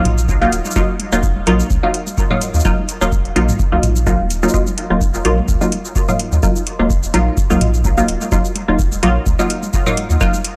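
The recording is dry and gritty, with a hardware character, transformer saturation and a light reverb, giving this cavernous, hazy dub techno excerpt a rough, lived-in surface. Set at 127 BPM in 4/4 with a gentle swing on the 16ths, it sits in Eb minor on a slightly flat tuning of A4 = 437 Hz, built around a single Ebmadd9 chord. Up front, a muted, full-bodied chord stab made from detuned sawtooth tones plucks through a filter with a short decay, softened by chorus and phaser and trailed by dub echo, while sidechain pumping makes it breathe. Beneath it, a round sine sub bass with a fast attack and long sustain carries tube saturation and pumps in the same way. A deep analog kick and metallic hi-hats with shaker, both tape-toned and re-recorded in a large room, drive the groove, and very quiet electronic toms sit far in the background. All the parts play from the opening moments through to about 10.4 seconds, across two passes of the same section.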